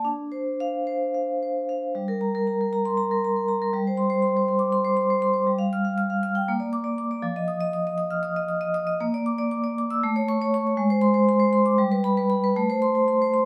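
Lightly reverberant and up front, this hypnotic, reflective contemporary classical passage for solo vibraphone, cut from a longer piece, rings with metallic, airy tones from medium hard mallets and a fast motor vibrato, moving in a rubato 7/8 at 236 BPM in eighths through G minor harmonies from Dm7 to Gm at 2.0 seconds, then on through Bb, A, G# and G to reach Am, across a range from F3 to F6.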